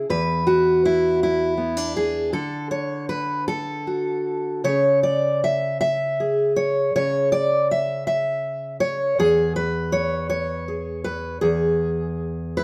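A fingerpicked steel-string acoustic guitar carries this short folk excerpt entirely on its own, sitting up front with the warm ring of fresh strings and audible finger squeak. The mood is hopeful and gentle, moving at a relaxed 53 BPM in a lilting 6/8 that breathes freely with rubato phrasing. The part spans from a low E2 up to E5, and the harmony moves from E5 through D and C#m before settling on E at 9.2 seconds. A generous studio reverb gives the guitar an auditorium-like glow, and the performance was captured live in one room. The 12.6-second passage is cut from a longer piece.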